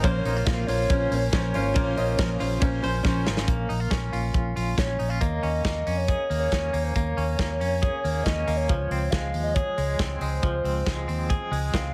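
A heavily compressed, radio-ready sound sits in a moderate studio reverb, giving this bright, youthful slice of jangly indie pop a close, polished sheen. A modern acoustic drum kit with bright cymbals, a medium-tuned snare and a tight kick sits up front beside a dark, round, foam-muted fingered electric bass that anchors the low end. Over them, a clean, twangy electric guitar recorded direct plays compressed arpeggios treated with tremolo and plate reverb throughout. For the opening 3.5 seconds a full-bodied steel-string acoustic guitar is picked in the background and a worn, woody, slightly detuned upright piano adds accompaniment, both bathed in plate reverb, before a drum fill at 3.1 seconds leads them out. Carrying the melody across the whole passage is a hollow, clarinet-like synth lead with a soft, sustained tone and gentle vibrato, colored by chorus, phaser, plate reverb and tape echo. 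The harmony moves through minor and suspended seventh chords to a closing major seventh, lending the brightness a wistful tinge.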